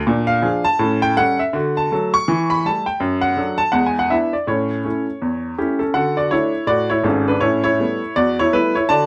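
An up-front upright piano carries this exuberant, playful stride jazz piece alone, its woody, intimate tone arriving with audible action noise. Swinging in 4/4, the piano moves through a chord sequence that opens on Bb7 before the passage shifts into a new section at 6.0 seconds, all set in a moderate studio reverb. The recording is cut from a longer piece and lasts just over 9 seconds.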